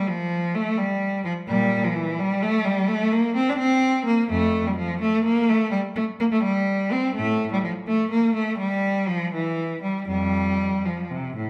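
A single bowed cello carries this brief classical passage, its rich, focused tone sitting up front with vibrato. Written in the manner of a baroque-style suite movement for unaccompanied cello, the music moves in 12/8 metre shaped with a flexible rubato feel. The line spans from F2 up to D4, and the cello plays alone for the whole 11.5 seconds. The mood is radiant and serene. A moderate recital hall reverb surrounds the player, and the clip is cut from a longer piece.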